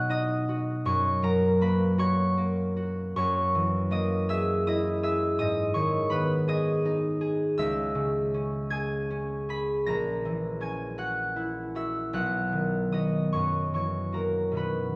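Heard from further back in a recital hall wet with reverb, this serene, dreamy classical piece for solo concert harp, cut from a longer work, drifts in a rubato 6/8 at about 53 BPM, its mellow, ringing, fingerpicked strings up front across a span from A#1 to B6 as the harmony moves gently from B through F#9, G#m, C#m and F#7/A# before returning to B and settling on F#7.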